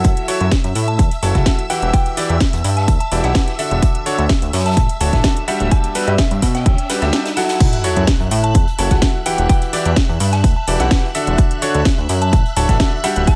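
A punchy electronic kick drives this bittersweet, soulful piano house excerpt at 127 BPM, with a clear vintage grand piano riff, fat detuned analog bass and shimmering string-machine chords all pumping in a small room alongside metallic-hatted house drums and a very quiet acoustic kit, while a soft FM synth bell melody enters at 0.9 seconds, a background riser and sub drop arrive at 5.9 seconds, and the kick drops out briefly before the drop lands with an impact at 7.6 seconds, the chords moving from F#m7 through Em9, Dmaj7 and Gmaj7 before returning through F#m7, Em9 and Dmaj7.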